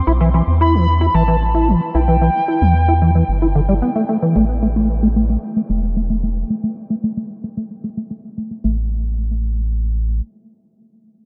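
A rubbery, resonant acid bass spins dark arpeggios through this melancholic, intricate IDM fragment at 112 BPM, with a filter sweep running from 4.4 s as the harmony moves from E minor to A5, while a warbling, nostalgic lead with chorus, tremolo and diffuse delay sings a brief high melody until 3.8 s above a round, square-and-sine analog bass, all set in a dreamy, reverb-soaked mix.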